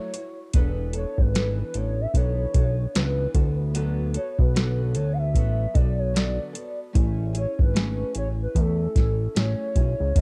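A soft vintage rhythm box sets a slow 75 BPM swung groove in 4/4 from 0.1 seconds, its deep kick, crisp snare and metallic hats overdriven and up front, while a fat, detuned sawtooth bass joins at 0.5 seconds with thick, sustained tones. This hazy, wistful indie and bedroom pop cut drifts through F#m7, E7sus4, D6 and Amaj7 as a dark, fingerpicked flamenco guitar adds quiet accompaniment with subtle chorus and vibrato. Above it all a hollow, woody clarinet-like synth lead carries the melody with a soft attack and analog chorus, and the dry home cassette recording gives the whole short excerpt a worn, intimate feel.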